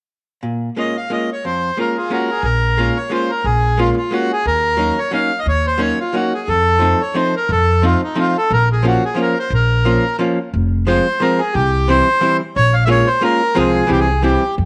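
A clean, hollow-body electric archtop guitar opens this nostalgic, bittersweet musette waltz at 178 BPM in a swung 3/4 at 0.4 seconds, soon joined by a reedy, dark accordion carrying the melody up front and, from 2.4 seconds, a woody pizzicato upright bass, all set in a moderate echo-chamber reverb with small-room ambience as the harmony moves from Bb minor into F harmonic minor at 10.5 seconds in this fragment of a longer piece.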